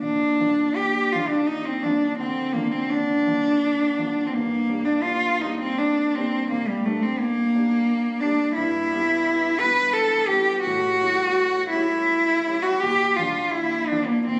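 A rich, smooth, bowed cello melody with vibrato sits close and up front over a warm, vintage baby grand piano accompaniment from the opening moment of this serene romantic classical duo in Bb major and 3/4 at 84 BPM, played with rubato and moving from Bb through Gm and Em/G to A7 before returning to Bb at 12.8 seconds, the pair heard in a concert hall's moderate reverb as captured on a phone in the room, with added club reverb and compression.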